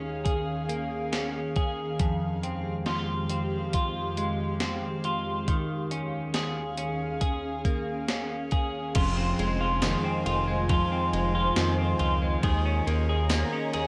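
A slow, straight 4/4 pulse at 69 BPM comes from a gated 80s digital drum machine with a thumpy kick, gated-reverb snare, hi-hat, tambourine, ride and crash, entering at 0.3 seconds and sitting up front beside a bright, twangy clean electric guitar picking arpeggios through analog chorus and delay. This melancholic, ethereal dream pop excerpt in F minor rests on an airy, detuned pad holding sustained chords with ensemble chorus and built-in reverb, moving between Eb7sus4 and Fm7. At 9.0 seconds a glossy, chorused synth bass joins, and the whole piece carries the worn, warbling pitch drift of old cassette tape under light reverb.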